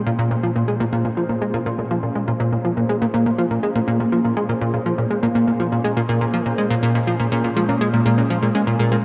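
A punchy, funky analog bass sits up front with a plucky sawtooth bite, its riff washed in lush chorus and analog delay over a swirling, nasal pad that holds a Bbm7 chord in the background through phaser and chorus. This expansive, cosmic ambient passage, cut from a longer piece, is steeped in a huge reverb and a dark production. At 7.3 seconds a round, tine-like pluck resembling a thumb piano enters with gentle arpeggios, set back in the background.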